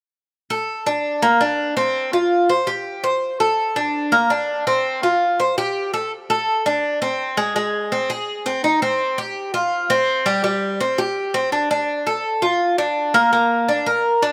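A solo Cuban tres, picked and up front with its metallic double strings and some octave-doubled courses, plays a danceable, warm Latin passage at 166 BPM in a straight 4/4, moving into a new section at 6.1 seconds within light reverb, in a short cut from a longer piece.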